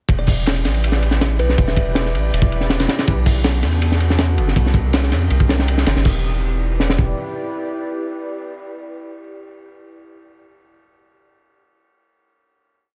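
Frenetic yet nostalgic, this short drum and bass piece with jungle roots races along at 161 BPM in E minor, moving through Em7, Bm7 and Cm7 before settling back on Em7. A heavily chopped acoustic breakbeat sits up front, with a tight kick, high-tuned snare, hi-hat, ride and crash, all saturated and gritty with a dark, rolled-off top. Alongside it, a soft, round dub sub bass holds long gliding notes, deep and sustained. A detuned, warbling tape-like pad drifts along with slow-attack held chords and syncopated pushes, one shape moved in parallel, its lo-fi mellowness softened by chorus and its own reverb. A woody, bright kalimba plays short phrases with a thumbnail pluck and dub echo near the start. The drums and bass stop at 7.1 seconds, leaving the pad to ring out on the final chord until 9.8 seconds in a close, dry room.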